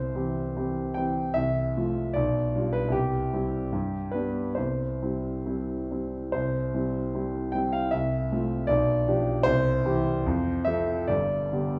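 A solo grand piano, natural and close up front, plays a lyrical romantic character piece in C major, tuned to A4 = 436 Hz and spanning G1 to G5. The tempo moves with rubato between 66 and 79 BPM in 2/4, and the harmony circles gently through tonic, subdominant and dominant-seventh chords before the opening phrase returns at 6.3 s. A wet recital hall reverb surrounds the piano with a soft glow across this brief 11.8-second excerpt from a longer piece.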